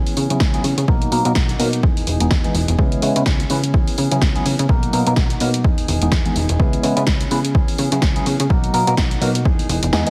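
Filtered disco house at 126 BPM in 4/4, with a swung sixteenth-note feel and a groovy, sensual mood, heard here as a roughly ten-second cut from a longer piece. A plucky analog bass with a funky sawtooth and square-wave bite, fast attack and decaying filter pluck runs from the start, pumping against the kick and dulled by a low-pass filter. The bell-like tine electric piano plays bright, clean, direct chords through a phaser, cycling through F#9sus4/C#, Bmaj7, Emaj7 and C#m7, while a mellow, dark, fingered electric guitar riff sits low in the mix, both also pumping and low-pass filtered. An overdriven analog drum machine supplies snare and pumping hi-hats, and an up-front, overdriven electronic kick enters at 0.4 seconds and drops out at 9.9 seconds, the drums carrying the sound of a large room. A filter sweep spans the whole passage, and the overall sound is heavily compressed like a radio broadcast, wrapped in digital ambience.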